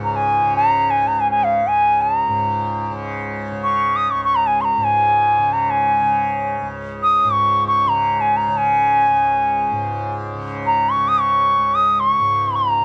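In free, unmetered time, this serene and radiant fragment of Hindustani classical music sets a bright, reedy bansuri up front, its pure, straight, tongued tone carrying the melody high in its register across the full 12.8 seconds. Beneath it, a softly plucked tanpura sustains a low, buzzing, shimmering drone throughout. A light reverb surrounds the pair, and the whole recording has the worn character of old cassette tape, with a warbly pitch drift.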